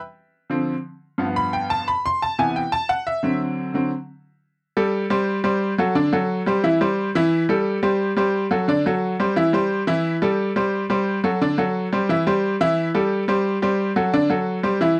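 Danceable and sunny, this brief latin excerpt at 176 BPM in straight 4/4 features a lone upright piano, bright and woody with a slightly detuned, worn character and audible action noise, playing up front in a dry, intimate 1970s-style studio sound with light reverb, opening on Dm7, G7 and Cmaj7 before cycling through Am7, C5, D7 and C from 4.6 s.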